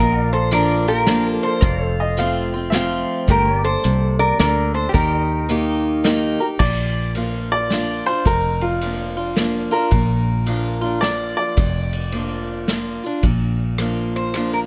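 Sunny and heartfelt, this honky-tonk and classic country fragment sways in a swung 3/4 at 108 BPM, with a metallic, nasal lap resonator guitar carrying the melody on slide and fingerpicks while a boxy, picked archtop guitar provides up-front accompaniment, finger squeak and all. A clean, compressed pedal steel guitar sits in the background with volume swells until 6.6 s, over a round, foam-muted fingered electric bass and an airy unplugged drum kit played with bundle sticks, its dark cymbals and punchy kick heard in a small room. A brilliant, woody upright piano adds a second line and then takes a solo from 6.6 s to 13.2 s as the music settles in Bb major, captured through close, detailed microphones with light reverb.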